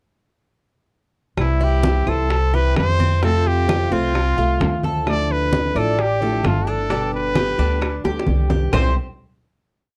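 Relaxed and danceable, this short Cuban son and guajira piece in C major moves at 131 BPM, with a clear, vibrato-laden trumpet playing a motif-based melody up front over a growly, woody upright bass tumbao that anticipates the chords, a dark, fingerpicked guitar with old strings and muted slaps, a metallic, double-strung tres picking an arpeggiated guajeo with slapback echo from 1.6 seconds, and ringing low congas, round soft-handed bongos with hand bell, and vintage claves holding a two-bar time line in the background, all captured in a dry, close 1970s-style studio sound before a drum fill at 8.0 seconds leads to a final C chord at 8.7 seconds.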